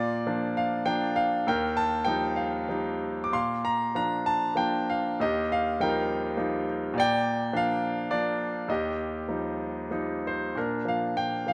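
The recording places a polished concert grand up front in a light reverb, its tone bright and present with a deep bass beneath. This is lyrical classical solo piano in a lilting triple metre, played with free, breathing rubato that gives the phrases a hopeful, warm glow. Spanning from Eb2 up to D6, the single piano carries the whole texture on its own for the full 11.5 seconds. The harmony rocks gently back and forth between two chords, Bb and Ebadd9, returning to Bb at 10.6 seconds. The brief passage is cut from a longer piece, and the piano's tone throughout is brilliant.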